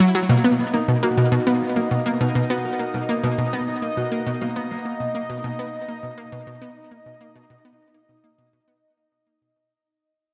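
A straight 4/4 pulse drives this hypnotic, mysterious stretch of ambient, sequencer-driven space music, cut from a longer piece and resting on a Bmaj7 chord. An up-front analog pluck riff, round and detuned with chorus and delay, leads from the start. A fingerpicked concert harp rings out in delayed arpeggios until 7.9 s, and a bubbling stepped-filter texture adds resonant, sustained sawtooth tones through its own chorus and reverb. A lush hall and a cassette-tape sound frame the mix as it fades out between 0.3 and 9.7 s.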